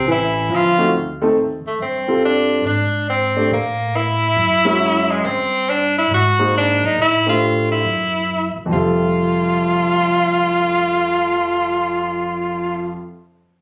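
Small-group jazz in a swing and bop vein, this sophisticated, relaxed fragment of a longer piece moves at 139 BPM in 4/4 with a firm swing on the eighth notes, centered in F major. An edgy, punchy tenor saxophone carries the melody up front throughout, its forceful, present tone marked by vibrato and scooped notes. A mellow, breathy baritone saxophone sounds only briefly at the opening, distant and roomy, with its own scooped inflections before it drops out at 0.9 seconds. Underneath, a pizzicato upright bass with steel strings gives a woody low foundation, while a warm, natural-sounding grand piano joins at 0.8 seconds to comp through shifting harmonies such as Am7b5, Gb9 and Ab7 before settling on Fmaj7 at 8.7 seconds. The sound has the character of a phone capturing a large studio, with moderate reverb and compression.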